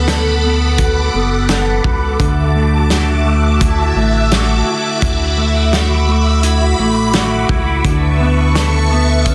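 Dream pop at 85 BPM in D major, floating and dreamy, with a phased string machine holding swirling, vintage sustained chords up front over a mellow electric guitar's clean, fingered arpeggios treated with analog chorus and delay. A chorused synth bass adds a glossy, saturated pulse-wave low end, and a loose indie drum kit with a punchy kick and medium-tuned snare enters at 0.1 seconds in a small room with a rolled-off top. The chords move from Bm7/D to Dadd9 at 2.2 seconds and Aadd9/D at 7.8 seconds, under light reverb and a dense, heavily limited modern master.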